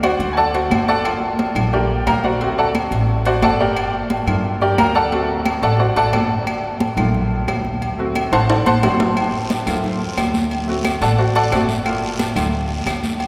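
A straight 4/4 salsa groove at 178 BPM in G minor sets a fiery, danceable mood, built from ringing high-tuned congas struck with hard hands, metal-shelled timbales and agogo bells, dry woody claves tucked into the background, and a dark, thumpy pizzicato upright bass on steel strings. Up front, a bright, slightly detuned upright piano with a worn, intimate character and audible action noise takes a brilliant solo over the alternating D7 and Gm7 changes. A drum fill at 8.3 seconds leads into the entry of a raspy guiro at 9.2 seconds, and a long cathedral reverb bathes the whole fragment in the resonance of a church or concert hall.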